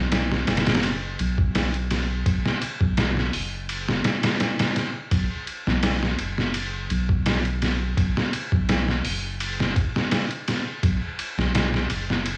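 A slow 84 BPM trip hop groove in 4/4 with a slight swing on the 16ths sets a brooding, dark mood, as gritty, pitched-down sampler-style drums with a thumpy kick, medium-tuned snare, hi-hat and ride cymbal sit up front with a cassette tape grain, over a round, deep analog bass with a wave-folded edge holding low between F#1 and B1, all in light reverb and digital ambience, cut from a longer piece.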